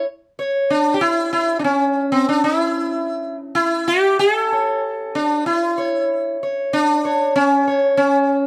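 A solo sitar sounds from 0.0 to 8.5 seconds, its bright, buzzing tone shimmering with sympathetic strings and sitting up front under a light reverb. This Indian classical passage in raga Todi on C# moves at 95 BPM in a straight 5/4, with a longing, introspective mood. It is a short cut from a longer piece.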